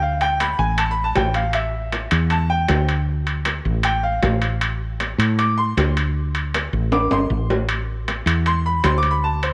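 A bright, brilliant baby grand piano opens this danceable, nostalgic Cuban son and guajira excerpt, soloing in open, high arpeggios over a dark, round, woody fretless electric bass that sits up front as the harmony moves between D5, A5 and D minor. Ringing metal-shell timbales with a vintage, band-limited character join at 0.2 seconds and play a fill from 6.9 to 7.7 seconds. A light reverb lends the straight groove the feel of a small room.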